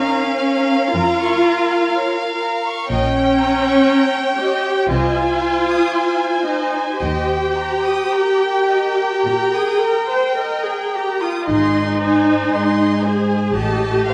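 Classical slow romantic movement for string orchestra in Ab major, lyrical and tender, unfolding at 53-62 BPM in a rubato 4/4. A rich, smooth violin section with vibrato carries the melody over a lush second violin line, while an up-front viola section supplies expressive, soft-attacked accompaniment with portamento. The cello section, smooth-topped, enters on the bass at 0.9 s, and a focused double bass section joins at 2.9 s, all bowed ensembles set in a wet concert hall reverb, in this excerpt cut from a longer piece.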